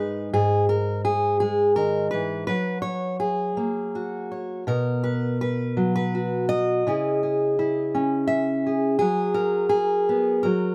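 In a rubato 3/4 at around 83 BPM, this nostalgic, peaceful folk piece, cut from a longer work, features a solo fingerpicked steel-string acoustic guitar tuned to A4 = 435 Hz, its dark, woody tone and old strings captured up front by close, detailed microphones in a dry setting as it moves from G#madd9 through F#, B5 and C#m to F#sus4 over 10.7 seconds.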